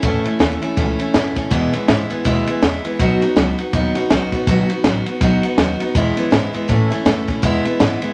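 Heard in a moderate studio reverb, this rowdy, rollicking rockabilly excerpt at 162 BPM in E major swings along with a bright, full-bodied picked steel-string acoustic guitar up front, a woody, thumpy pizzicato upright bass on gut strings, and a dark, smooth compact cocktail drum kit with a punchy kick, high-tuned snare and ride cymbal, all three playing throughout the 8.1 seconds.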